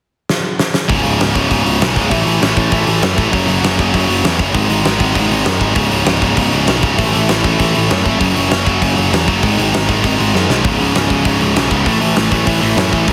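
A straight 4/4 punk rock pulse at 197 BPM kicks off with a drum fill at 0.3 seconds on a big acoustic kit, its fat snare, punchy kick and hi-hat up front in a bright stone room, before a tight, distorted guitar riff and a growly, overdriven picked bass drive a raw, urgent cycle of C#5, A5, F#5 and G#5 power chords in C# minor from 0.9 seconds. At 10.6 seconds, after a second quick fill, a compressed, overdriven electric guitar joins the riff in the background, all under light reverb and a heavily compressed, radio-like sound in this short cut from a longer piece.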